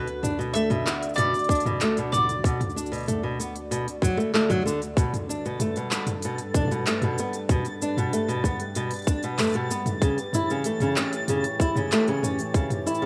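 This folktronica fragment moves at 95 BPM in a straight 4/4, with a hopeful, warm mood and tuning set to A4 = 441 Hz. A fingerpicked flamenco guitar plays arpeggios up front through tape echo, its finger squeak audible, over a warbling, detuned pad whose nostalgic, lo-fi sustained chords carry chorus, built-in reverb and 12-bit sampler grit. A round, double-strung mandolin sings a short tape-echoed melody that stops at 3.3 seconds, while an organic electronic kit of cabasa, handclaps, crisp hats and toms sits up front with overdrive, joined at 1.5 seconds by a tight, overdriven electronic kick. The harmony moves from D6 to Gadd9 and then A7. At 5.3 seconds a twinkling granular texture enters high in pitch but quietly in the mix, adding a bright octave-up shimmer with its own reverb. The whole has the light reverb and rough feel of a home demo.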